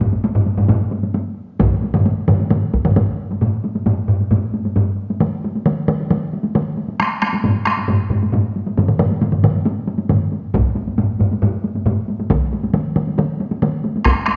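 A short cut from a longer Japanese traditional taiko drum performance opens with two taiko ensembles sounding together from the first moment, one struck with hard sticks in a small room and the other with heavy sticks in a live room, both placed up front. At 1.6 seconds a solo taiko part enters with hard sticks, close and dry, playing on until 13.7 seconds, while a third ensemble, also hard-sticked and close, adds a brief burst before dropping out and then returns from 10.5 seconds. The straight 4/4 pulse speeds up across the whole piece, giving it a powerful, driving urgency as an opening passage gives way to a longer second section at 3.4 seconds. The overall sound sits in a reverberant recital hall and carries the worn, warbling character of old cassette tape, with a drift in pitch that lends the drumming a faded, vintage cast.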